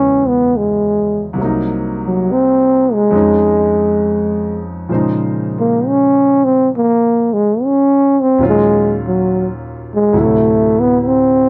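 A dry, close studio sound with a 1970s character and light reverb frames this intimate, romantic swung jazz excerpt, where a breathy, raspy, gritty trombone growls and scoops through the melody up front for the full 11.5 seconds while a vintage concert grand with deep bass and short sustain supplies smooth accompaniment over chords such as Emaj7, Cm7b5, Bbm11 and D9.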